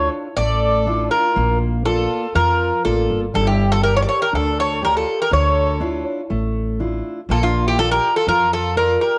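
A bright, metallic bouzouki leads up front with its double-strung, partly octave-doubled melody in this driving, dramatic Greek folk excerpt, while a dark, woody bowed violin adds a vibrato second line in the background, a full-bodied fingerpicked jumbo guitar supplies accompaniment, and a pizzicato upright bass with steel strings sits prominently beneath, all moving through Dmadd9, Bb and Gm in a small room with moderate spring reverb and the dulled top end of a home cassette recording.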